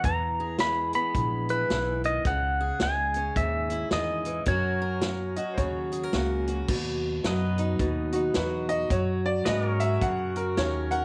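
This down-home, heartfelt honky-tonk and classic country piece swings easily, with a twangy, up-front pedal steel carrying the melody with fingerpicked slides and volume swells until 6.1 seconds. Underneath, a boxy, picked acoustic guitar with audible finger squeak, a woody, growly pizzicato upright bass and a vintage kit with dark cymbals and a tight kick keep steady time. A brilliant upright piano enters at 5.4 seconds and takes a solo from 6.7 seconds, while a second, quieter pedal steel adds bright sustained chords behind it, all in a studio reverb.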